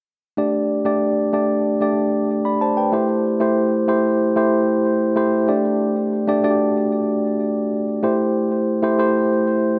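In a straight 4/4 at 94 BPM, this romantic, uplifting pop excerpt features a clean, up-front tine electric piano playing alone through a combo amp with digital delay, moving between Dsus4 and Am7 in a moderate plate reverb and closing on a brief fill at 9.6 seconds.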